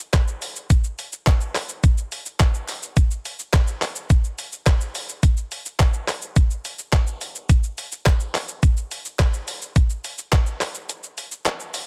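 A dense, heavily limited modern master with little reverb frames this short, upbeat pop excerpt, which sits at 106 BPM in a straight 4/4 feel and carries a summery mood. A detuned 8-bit digital drum machine drives the piece from 0.1 to 11.9 seconds, its sampler-style electronic kit up front, with a thumpy kick, hi-hat, shaker and handclaps. Beneath it, a group handclap adds a human, hollow touch, recorded acoustically in a small room and kept very quiet in the mix until it stops at 11.6 seconds. The contrast between the electronic machine and the faint live claps gives the groove its character. A break arrives at 10.9 seconds, closing out this fragment of a longer piece.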